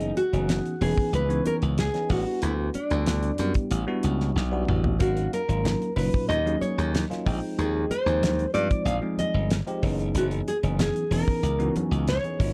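A straight 4/4 groove at 93 BPM drives this funky slice of electric jazz fusion, cut from a longer piece. A damped 70s drum kit sits up front with a fat snare, a tight kick, hi-hat and toms, and it plays a fill from 4.4 to 5.0 s before ringing, medium-tuned congas enter very softly at 5.0 s in a small room. A glassy slap bass, bright, punchy and direct, anchors the low end, while a barky tine electric piano adds bell-like, clean accompaniment treated with phaser and plate reverb. On top, a full-bodied, fingerpicked nylon-string guitar carries the melody with a deep classical tone, close and forward in the mix. The harmony moves through suspended thirteenth chords, F#13sus4, A13sus4, G#13sus4 and A#13sus4, inside a dark, warm production with light reverb.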